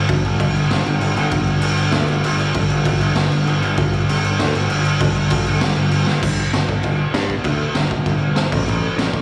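A bright, growly picked electric bass drives this angry, urgent punk rock excerpt at 196 BPM in 4/4, sitting up front from the first second, with tuning set slightly sharp at A4 = 445 Hz. A raw, gritty garage drum kit with a boomy kick, a high-tuned snare, crash cymbal and a rolled-off top holds a half-time feel until a drum fill at 6.1 seconds launches a new section at 6.2 seconds. The sound carries the feel of a live gig heard through a venue's PA, with small room ambience, a touch of recital hall reverb and little reverb overall.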